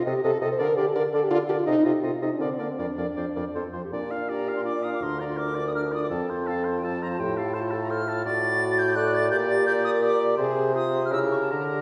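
Heard from further back in a reverberant recital hall, this quick classical-period movement for wind quintet moves at 167 BPM in 3/4 with a rubato feel, its dramatic, urgent mood set in B-flat major before turning to G minor at 8.3 s. A silvery, pure flute with vibrato and a soft attack carries the melody high above a clear oboe second line, while the French horn sounds first at 0.0 s and stays present in the accompaniment beside a mellow clarinet set in the background. Underneath, a close-miked bassoon with vibrato holds the bass up front, and the passage ends on a diminished chord as though cut from a longer piece.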